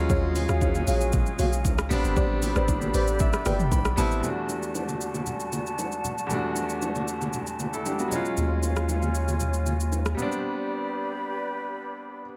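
A deep, dark log drum bass opens this late-night amapiano excerpt at 116 BPM, driving the first 4.2 seconds alongside a clear, intimate baby grand piano whose action noise is audible and which adds a fill from 2.7 seconds. Underneath, a breathy, distant flute ensemble holds sustained chords with sidechain pumping and vibrato, while soft detuned chord stabs with chorus and delay, an up-front tape-warm deep house kit with hi-hat, kick, rim click, shaker and toms, and ringing congas and bongos in a large room move through minor eleventh chords. A round, nasal analog bass appears briefly at 8.4 seconds before the drums drop out for a closing break at 10.4 seconds, all captured with little reverb.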